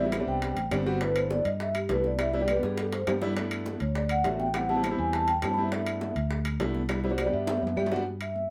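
A mellow vibraphone with medium motor vibrato takes the solo over a clear, intimate grand piano and a round, dark electric bass up front in this lively, danceable Afro-Cuban jazz excerpt at 204 BPM in G major, while ringing metal-shell timbales, tight saturated bongos, very quiet high-tuned congas and woody claves drive the groove, with drum fills at 2.6 and 7.5 seconds, all heard as a band playing together in one room.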